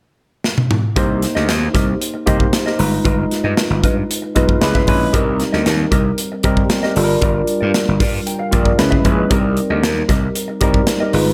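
A drum fill from a modern studio kit with gated reverb opens this polished 1980s jazz-funk pop excerpt at 0.4 seconds, leading into a slick, urban groove at 115 BPM in C minor, with punchy kick, medium-tuned snare, hi-hat and toms sitting up front in an airy small room. At 1.0 seconds a gritty, growly slap bass with overdrive joins alongside a barky tine electric piano treated with lush chorus, while a mellow, dark electric guitar plays a compressed, fingered riff with subtle chorus in the background. The chords move through Cm7, G7b9b13, Dbm7 and Gm7 under light studio reverb.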